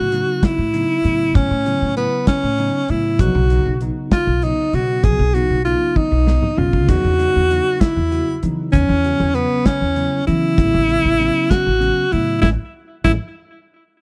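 Electric jazz fusion in 6/8 at 65 BPM, counted in dotted quarters with a straight feel, this slick, bright passage in A lydian is cut from a longer piece. A breathy alto saxophone carries the melody up front, close-miked and played in a jazz style with vibrato and a soft subtone. Beneath it, a bell-like tine electric piano adds clean accompaniment colored by a phaser, while a pizzicato upright bass with gut strings gives a woody, thumpy foundation. A modern studio drum kit sits forward in the mix, its tight kick, medium-tuned snare and rolled-off top giving it a smooth, dark character, with a drum fill at 6.0 seconds and a band accent arriving at 12.4 seconds. The harmony moves from Aadd9 through Badd9 and Esus2 before returning to Aadd9, all captured as a dry, close 1970s-style studio recording with small room ambience.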